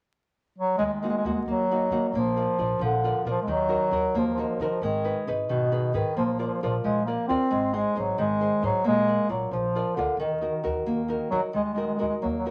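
A vinyl crackle sits over a moderate studio room in this brief wistful, passionate cut from an Italian serenade in 6/8 at 89 BPM, set in Eb harmonic minor. A roomy, distant bass clarinet carries the melody up front in a classical solo style from 0.6 seconds, while a fingerpicked nylon-string guitar with woody, old strings and a small tone joins at 0.8 seconds. A dark, growly pizzicato upright bass underpins the chords moving from Ebm through Bb, Abm and Ab back to Ebm.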